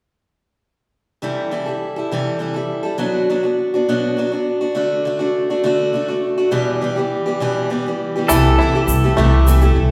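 Acoustic folk in a peaceful, gentle 6/8 lilt, this excerpt opens with a bright, boxy parlour steel-string guitar picking through C6, Bm, D and Em, up front in a reverberant recital hall. At 8.3 seconds a small band joins: a dark, woody, thumpy pizzicato upright bass on gut strings, percussive fingerpicked banjo arpeggios with a twangy edge, a clean, compressed electric pedal steel with slide and volume swells as a second line, and a grainy, close egg shaker.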